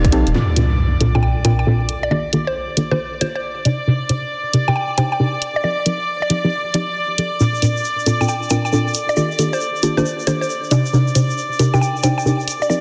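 UK two-step garage at 136 BPM in Bb major, soulful and bouncy with a swung sixteenth feel, where deep, up-front chord stabs with chorus and delay carry jazzy ninth chords over layered electronic hi-hats with a softly clipped snare, a reedy violin section sustains pumping chords, a woody mallet-like pluck with phaser adds the melody from 1.1 s, an electronic impact hits at 0.3 s, and a grainy egg shaker joins at 7.4 s in a dense, heavily limited mix with light digital reverb.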